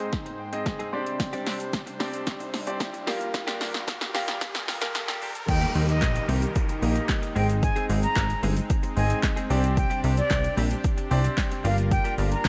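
A straight 4/4 pulse at 112 BPM drives this euphoric, summery dance-pop piece in Eb major, where an overdriven deep house drum kit with a deep kick, punchy snare and metallic hats sits up front beside a sidechain-pumped intimate grand piano, a soft detuned supersaw, a clean direct-recorded electric guitar riff with subtle chorus, a very quiet riser and downlifter, and a grainy tube shaker through a filter-swept build-up, until the drop at 5.5 s brings in a plucky, funky analog bass and a breathy, bright concert flute melody trailed by delay.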